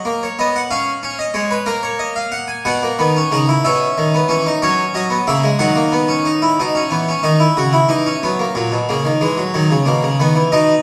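Set in a reverberant recital hall, a full, plucked French-style harpsichord with two sets of strings sits up front and plays alone through this joyful, elegant fragment of a baroque-style three-part fugue in B major, moving in a straight 6/8 at 61 dotted-quarter beats per minute, tuned slightly below modern pitch, and passing into a second section at 6.6 seconds that closes on a B chord.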